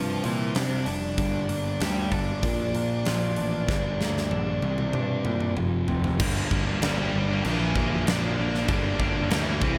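This angsty, cathartic quiet-loud alternative rock excerpt opens with a dark, octave-fuzz lead guitar carrying the melody with slapback echo. Beneath it, a clean, twangy electric guitar plays phaser-tinted arpeggios and a murky fuzz guitar churns out a riff, both set back in the mix. A punchy, overdriven bass, picked and fuzzy, anchors the low end. The huge arena drum kit enters at 0.2 seconds, up front in a big room, with a fat snare, punchy kick, hi-hat, crash and toms, and it rolls through a long fill before the shift at 6.2 seconds. There the twangy arpeggios stop and a bright, scooped high-gain guitar joins the riff for a heavier closing passage under light reverb and studio ambience.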